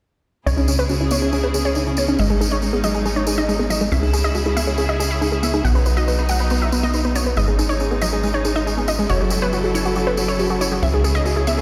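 At 0.5 s the full arrangement arrives together: a punchy, detuned unison pluck carries the melody from C#4 to F#5 through a tape echo, while a second pluck sits in the background spinning arpeggios with its own tape echo. This is bittersweet, soaring uplifting trance at 139 BPM in a straight 4/4, set in C# minor. Beneath them, a driving sawtooth sequencer bass sits up front, and a biting symphonic string section holds bowed, vibrato-laden chords through C#m, G#sus4, B and F#m7. A jingly tambourine rings from a distance, and both plucks move through filter sweeps across the passage. A huge ambient reverb with an 8.2 s tail, heard as if through a big sound system in a bare room, gives this fragment of a longer piece a cavernous scale.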